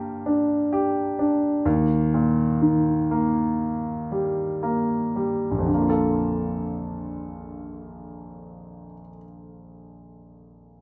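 Emotional and heartfelt, this short pop fragment in Bb major unfolds at a slow 55-66 BPM as a clear, polished concert grand piano sits up front with deep bass and short sustain, easing its pace through the opening 5.7 seconds over Gm and Eb before settling onto Bbmaj7, all bathed in wet studio reverb that gives the sense of a band playing live in one room.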